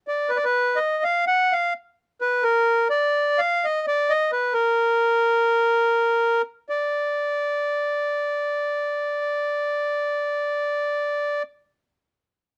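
Virtuosic and restless, this short Balkan folk fragment in a driving 9/8 features a solo accordion, reedy and clear with a single-reed dry tuning, sitting up front and mid-forward in a close, dry 1970s-style studio sound touched by light reverb, moving from its opening section into a contrasting second one at 6.7 seconds.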